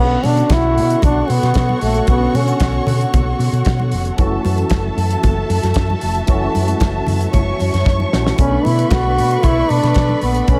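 A straight 4/4 disco groove at 114 BPM drives this glamorous short cut in B minor. It is anchored by a damped 70s drum kit with a fat snare and tight kick, sitting up front beside a round, punchy hollow-body short-scale bass played with the fingers. Quiet, bright congas enter together with the kit at 0.2 seconds. A clear, close-miked trombone carries the melody in a jazz style, with soft attacks, scooped notes and vibrato; it plays until 3.1 seconds and returns at 8.4 seconds after a drum fill. Underneath, a dark, woody violin section plays a lush second line, a warm string section holds sustained chords, and a barky tine electric piano, lightly overdriven with ensemble chorus, provides accompaniment in the background. The harmony moves from Bm9 to F#m7 and back, and light reverb with studio ambience gives the mix a polished sheen.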